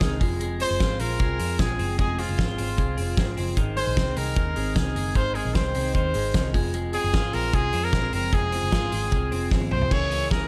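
A straight 4/4 pulse at 152 BPM drives this bright, breezy slice of jangly indie pop, cut from a longer piece, where a clear, roomy trumpet with light vibrato and slapback echo carries the melody over a twangy, slightly broken-up electric guitar through a small old amp, a twelve-string electric guitar picking compressed arpeggios through lush chorus and slapback echo, a round, foam-muted vintage picked bass, and a loose indie drum kit with a punchy kick, fat snare and dark cymbals, as the harmony moves from Fm to Ab and back before a drum fill at 9.5 seconds leads into a Dbm6 chord at 9.9 seconds.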